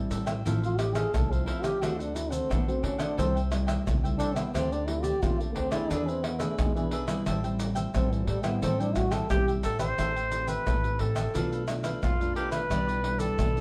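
Samba and choro in A minor at 88 BPM, this short excerpt from a longer piece carries a yearning, bittersweet mood over a straight 4/4 pulse. A crisp, picked cavaquinho and a dark, full-bodied nylon-string guitar, thumb-plucked in a deep classical manner, accompany from the start, while a woody pizzicato upright bass with steel strings holds the low end. Maracas, pandeiro, tamborim and a deep surdo enter at 0.1 seconds, sounding compressed and saturated with hard hands, placed up front. A warm trombone takes a jazz-style solo from 0.6 seconds, with vibrato and scooped notes, over a progression that moves from Fmaj7/A through D7 and E7 to Am9. A mellow trumpet arrives at 9.3 seconds to carry the melody into the next section, its vibrato and scooped notes sounding distant and roomy yet up front, as the harmony shifts to Bm7b5 and Em7/B. A wet studio reverb places the ensemble further back in the room.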